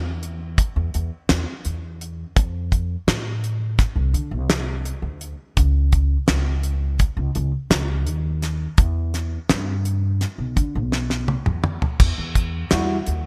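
A damped 70s drum kit drives this driving, brooding progressive instrumental in 9/8, its fat snare, tight kick, toms, hi-hat and crash sitting up front in dry, polished gated reverb, with a fill at 10.9 seconds. A woody, dark, growly pizzicato upright bass plays from the start under chords moving from F through C#sus2 to Em. A bright tine electric piano with subtle chorus appears only briefly at 12.7 seconds, all framed in a bright 1980s-style digital studio sound in this short cut from a longer piece.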